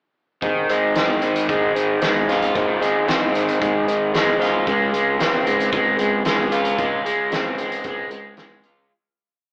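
A straight 4/4 pulse at 113 BPM drives this short, upbeat indie rock piece in Ab major, with a jangly mood through its single verse. A loose acoustic drum kit sits distant and roomy, keeping a pop groove on hi-hat, punchy kick and fat snare. Up front, a crunchy, double-tracked electric guitar plays picked arpeggios as the main riff, moving from Ab6 to Dbmaj7 at 4.7 seconds. Underneath, a mellow, close-miked bassoon carries a driving eighth-note bass line in a classical style, colored by light vibrato. The band sounds like it is playing live in one room, with light reverb and an AM radio character, and the whole piece fades out from 6.8 seconds until it ends at 8.9 seconds.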